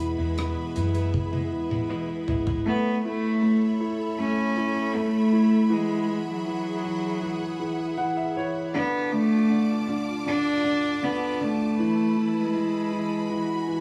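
Pop ballad, heartfelt and tender, cut from a longer piece. It opens with a dry, dark 70s drum kit with a tight kick that plays a fill from 1.1 seconds, a round, foam-muted fingered electric bass and a clean, direct-recorded electric guitar picking compressed arpeggios, and all three drop out by 2.7 seconds. A rich, reedy cello then carries the melody up front, bowed by one player with a gut-string, period-style tone, while a warm, natural grand piano accompanies throughout with a brief fill at 7.6 seconds, a close, lush studio string section sustains chords with vibrato, and light small-room reverb surrounds the sound.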